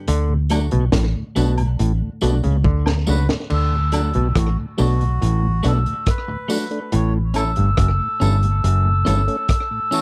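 Sunny and uplifting, this roots reggae excerpt at 70 BPM in D major sets a gritty, saturated breakbeat kit with slapback echo and a round, foam-muted fingered bass up front under a stringy clav riff, a dark tonewheel organ with slow rotary swirl in the background, twangy clean guitar with dub echo, and tambourine and woodblock, before a reedy, breathy melodica carries the melody from 3.1 seconds during a drum fill, all in a dry, close 1970s-style studio sound.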